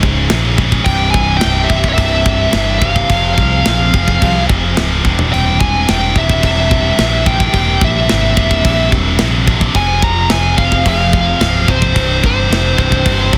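A relentless, aggressive heavy metal passage, cut from a longer piece, opens with two scooped, distorted high-gain rhythm guitars playing a riff (one set further back), a growly picked electric bass, a tight acoustic drum kit with a softly clipped kick and a fill at 5.1 seconds, and a very quiet, dark symphonic string section holding lush bowed chords with vibrato and portamento, while from 0.8 seconds a bright high-gain lead guitar with delay carries the melody through a dense, heavily limited modern master.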